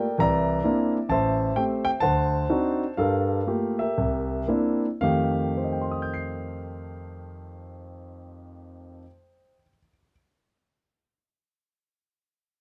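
A swung eighth-note feel in 4/4 drives this short solo jazz piano piece, with the tempo sitting between 111 and 131 BPM and slowing down from about 1.1 to 5.0 seconds. The mood is sophisticated and playful, set in F mixolydian and tuned slightly high to A4 = 441 Hz. A warm grand piano carries everything alone from the first moment to 10.1 seconds, ranging from A1 up to C7 and placed up front in the sound. The harmony moves through rich extended chords, C9, Am7, D7b9, Gm9 and back to C9, before arriving on F9 at 5.0 seconds as a new section begins. Close, detailed microphones and a light reverb give the instrument an intimate, polished presence in this fragment cut from a longer performance.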